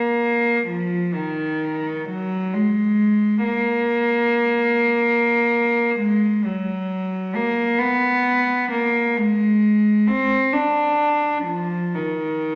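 In a 6/8 taken with free rubato, the pulse drifts between 38 and 48 BPM in dotted quarters, so the meter is felt more than counted. This is a meditative, lonely classical fragment, lifted from a longer piece, for a single unaccompanied cello, tuned to A4 = 444 Hz. The one player bows sul tasto across the whole 12.6 seconds, drawing a pure, floating tone with a smooth top that sits between Eb3 and D4. The cello is placed up front, yet it carries the wet bloom of a recital hall with a 1.4-second decay, which lends its warm voice a sense of solitary space. The result is a slow, expressive passage of quiet introspection.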